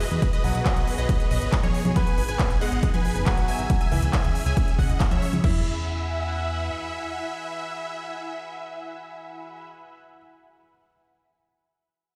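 Uplifting trance in a euphoric, soaring mood, cut from a longer piece, opens on a drop where an up-front overdriven kick and a crisp-hatted drum kit with claps, congas and cymbals drive under huge detuned supersaw chords carrying the melody, pumping against a punchy, dark plucky bass. A lush phased pad holds sustained chords while a brilliant concert grand piano and a round, chorused analog pluck, set back in the mix, weave second lines through delays, and a band accent lands at 5.0 seconds. The drums stop at 5.5 seconds and the bass at 6.7 seconds, leaving the synths and piano to ring into a stone-room reverb from a big system in a bare space.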